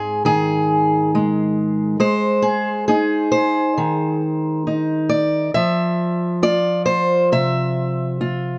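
Close, detailed and nearly dry, this 8.6-second cut from a longer folk piece puts a warm, fingerpicked steel-string acoustic guitar up front as the sole voice, moving at an unhurried 68 BPM in straight 4/4 with a hopeful mood, ranging from Ab2 to E5, tuned to A4 = 443 Hz, and shifting from an Ab chord to F5 at 5.6 seconds.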